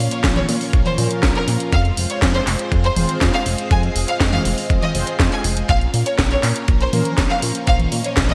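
Bright 1980s-style digital production bathed in a lush hall reverb gives this nostalgic, bittersweet italo disco excerpt in F minor its glossy sheen at 121 BPM, moving from Bb minor to F minor and back. A vintage string machine holds full, slow-blooming chords under round, brassy synth stabs set in the background. A chorused, nasal synth bass sustains below, while a clear studio violin section carries a smooth melody with vibrato and digital delay from 0.1 seconds. Up front, an overdriven house kit of handclaps, hi-hat, toms and a cracking snare with gated reverb pairs with a gritty, thumpy electronic kick drum that enters at 0.2 seconds.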